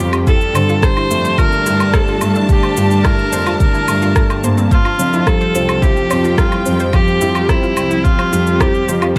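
Over a straight 4/4 pulse from a deep, up-front electronic kick and tape-softened electronic shaker, woodblock and rim click, this tender, luminous piano and strings electronica excerpt sets a clear, intense solo viola melody against a felt-muted upright piano riff with audible action noise, veiled con sordino cello-section bass and lush background string-section chords that pump with sidechain, plus a round, detuned analog pluck arpeggio carrying chorus, tape echo and the same pumping, in a dry, close mix as the harmony moves from Gmadd9 to Fsus2 at 4.7 seconds.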